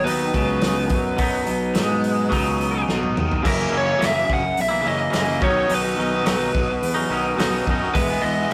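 A straight 4/4 indie rock groove, jangly and wistful, rides on a loose small-room drum kit with a tight kick and a fill at 2.9 seconds, a round fuzz-soaked fingered bass, a raw, bright garage guitar riff and a clean, compressed, twangy electric guitar riff set up front, while a biting overdriven lead guitar carries the melody as the chords move from B to F#7 at 3.5 seconds in this rough rehearsal-room fragment with light reverb.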